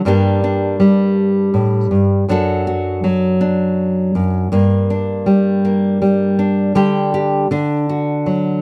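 A dark production with light reverb frames this short, intimate folk fragment in 3/4, cut from a longer piece. A solo nylon-string guitar sits up front from 0.1 seconds, fingerpicked in a classical manner with the bright sparkle of fresh strings. Its wistful progression moves from G minor to D over F sharp, returns to G minor, then settles on a suspended D that resolves to D major at 7.5 seconds before the guitar stops at 8.6 seconds.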